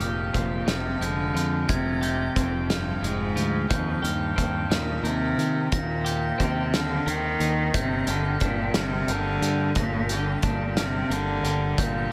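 Brooding and melancholic, this dreamy post-rock excerpt in a straight 6/8 sets a rich, nasal bowed cello melody with vibrato up front over a round, dark fingered electric bass, a loose indie drum kit with a punchy kick and rolled-off top, clean compressed twelve-string electric guitar arpeggios in the background and sparkling, bell-like glockenspiel arpeggios struck with brass mallets, the cello, guitar and glockenspiel trailing diffuse ambient delay as the chords move from Fmadd9 to Cm7/Eb at 3.7 seconds and Gm at 7.7 seconds, all soaked in a huge ambient reverb.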